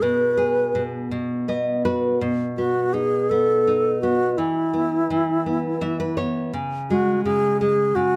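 An airy wooden-headed alto flute with vibrato and a crisp attack carries the tender melody up front in this short fragment of a gentle children's lullaby in E major. It drifts rubato in 6/8 at 56 BPM (dotted quarters), tuned to A4 = 436 Hz, while a fingerpicked nylon-string guitar with a deep classical tone accompanies, also up front, adding fills at 1.1 s and 5.5 s over chords moving from G#m/B through B to E5 and C#5, and the pair sits in a moderate recital hall reverb captured by close, detailed microphones.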